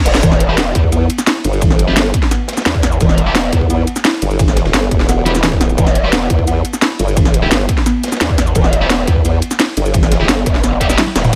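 Dry and close, this tense, futuristic stretch of dark technical drum and bass hits with a punchy electronic kick, an overdriven, up-front drum and bass kit with a cracking snare and bright hats, and a very quiet, gritty breakbeat kit underneath, while an aggressive, saturated growl bass (pausing from 3.5 to 5.8 seconds) and a pulse-wave formant-sweep wobble bass churn in the low end, soft round pluck arpeggios with chorus and delay sit above, sludgy distorted guitar stabs linger in the background, and a drum fill closes it as the kick drops out at 11.0 seconds.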